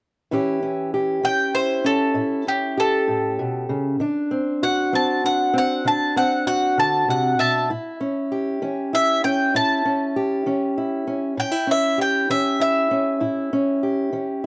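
A fingerpicked old ladder-braced acoustic guitar opens at 0.3 seconds with a dark, woody, boxy accompaniment on old strings, joined at 1.2 seconds by a bowl-back mandolin carrying the melody up front with its warm, picked double strings. This gritty, rollicking acoustic country blues moves at 65 BPM in a straight 12/8 in A mixolydian, working through A7, D7 and back to A7. The dry, close 1970s-style studio sound places both instruments near in a small room, and the piece is cut from a longer performance.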